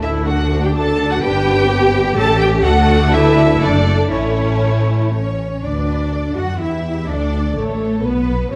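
A moderate scoring-stage reverb surrounds this short cut from a longer piece, with a layer of vinyl crackle running beneath the strings. It is a quick, lively classical-period movement for string orchestra in D major at 125 BPM in 3/4, played with a spirited rubato feel. A distant, lush violin section carries the melody with smooth vibrato, while a second violin section adds a focused line beneath it, and the violas supply an intense, bowed accompaniment. The double basses sit up front with a warm, even tone, and a close cello section joins the bass line at 0.3 s, resting in the background. The harmony moves through G, A7 and D before a new section at 5.6 s brings in E minor.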